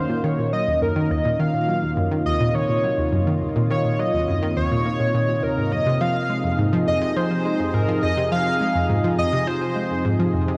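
A wet plate reverb with a long 2.7-second tail bathes this short cut from a longer piece of ambient, sequencer-driven space music, moving at 104 BPM in a straight 4/4 in Eb dorian. An up-front analog pluck carries the riff in the low register, its round, wave-folded tone given a worn edge by cassette tape coloring, chorus and tape echo, with fast, decaying notes. Beneath and around it, a lush unison pad holds thick, detuned sustained chords that bloom in with a slow attack under chorus. On top, a shimmering, retro pulse-width lead sings the melody between Bb4 and F5, sustained with vibrato, chorus and tape echo, and sits up front alongside the pluck. The harmony moves from Ebm7 to Fm7 at 5.7 seconds, and the lead drops out at 10.0 seconds while the pad lingers to the end, leaving a hypnotic, cosmic mood.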